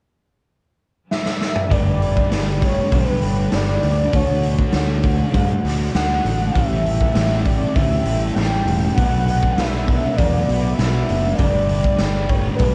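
A velvety, chorused synth lead carries a wistful, dreamy melody from 1.1 seconds over a gritty, saturated garage drum kit that opens with a fill, and at 1.7 seconds a slightly broken-up guitar with reverse reverb, a dark fuzz guitar and a growling overdriven bass join in, as this 99 BPM shoegaze and dream pop fragment drifts through Gadd9, Dmaj7, A7 and Bm7 in a small-room home cassette recording.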